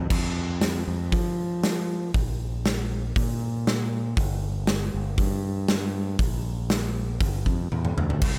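Sunny and driving, this short classic rock excerpt moves at 118 BPM in a straight 4/4, tuned slightly low to A4 = 439 Hz. A growling fingered electric bass carries the low end from G1 up to F3, its overdriven, directly amped tone sitting up front and sounding bright. A big acoustic rock drum kit plays alongside it, recorded naturally in a large room with bright cymbals, a medium-tuned snare, a punchy kick, hi-hat, crash and toms, also placed up front. Both parts run nearly the full length, from the opening moments to just past 8 seconds, with a drum fill arriving at 7.7 seconds to close the passage. A light reverb gives the pair a touch of space.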